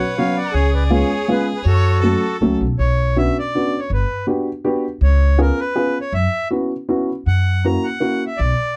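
A bittersweet, whirling musette waltz in B harmonic minor at 161 BPM, swung and rubato, this excerpt puts a reedy, airy single-reed accordion up front on the melody, joined by a clear, intense violin with vibrato on a brief second line that stops at 2.6 seconds. A dark, woody upright piano with audible action noise and a slightly detuned, intimate tone supplies accompaniment, while a growly pizzicato upright bass on steel strings anchors the low end from 0.5 seconds. The close, dry 1970s-style studio sound carries light reverb, and the harmony moves from Bsus2 and C#7 through Gmaj7 to a closing F#7.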